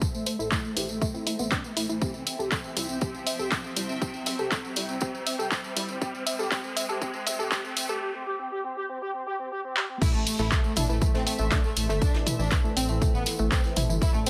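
A straight 4/4 groove, driven by a punchy, tape-warm electronic kick and a dry analog drum machine of handclaps, hi-hat, toms and crash, with a jingly tambourine on top, carries this melancholic, cinematic melodic techno excerpt. Beneath it a dark, detuned saw bass rumbles, while a sweeping resonant pad, a woody wave-folded pluck playing arpeggios and a smooth, expressive synth lead with vibrato all pump against the kick. Filter sweeps on the pluck and lead and an electronic riser build toward a break at 8.0 seconds, and the drop at 10.0 seconds adds a lush, close violin section with tape echo and a very quiet brushed jazz kit, all within a dense, heavily limited master with light studio reverb.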